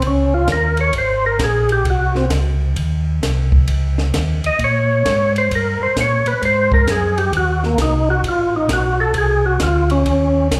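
Soul jazz organ trio in a soulful, greasy swing at 132 BPM, cut from a longer piece and heard live through a club PA with light club reverb. An overdriven, gritty tonewheel organ carries the melody as a solo through the whole 10.6 seconds, its percussive second-harmonic attack set in slow rotary speaker, chorus vibrato and slapback echo. Beneath it a mellow, round second organ with key click and slow rotary holds down the bass while a compact, dry cocktail kit with dark cymbals, a high-tuned snare and a punchy kick keeps time over chords moving from Db69 through Bbm7 and Gdim to Am69.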